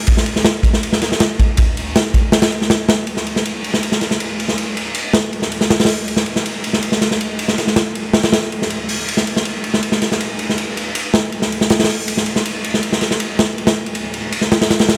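Drum and bass at 160 BPM in a straight 4/4, this dark, atmospheric excerpt centers on a raw, up-front acoustic garage kit of kick, snare, hi-hat and ride that enters at 0.1 s on a drop, its punchy kick, medium-tuned snare and gritty saturation heard in a pumping, bright stone-room sound with a rolled-off top, before a new section begins at 3.1 s and carries on to 15.0 s.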